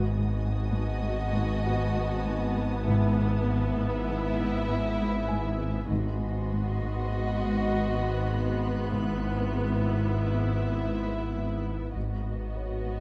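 This eerie, uneasy excerpt from a suspense film score opens with muted, con sordino strings: a veiled violin section carries a narrow melody over a second violin line, while a lush, higher violin texture hovers above until about 11.6 seconds. Violas sustain a soft-attack accompaniment, and two cello sections sit beneath, one holding the bass alongside warm double basses, both tucked into the background, and the other playing a very quiet riff. A deep, punchy sine sub bass with a pitch-drop attack drones on the low tonic, and a mellow, distant French horn section holds chords in the background. Very quiet, close and dry timpani enter at 2.9 seconds and fall silent by 9.8 seconds, and a soft, thick-felt upright piano adds an intimate, shadowy texture from 5.3 seconds. Set in a five-beat metre, the harmony rocks between G#m7 and E/G#, heard through close, detailed microphones in a moderate scoring-stage reverb.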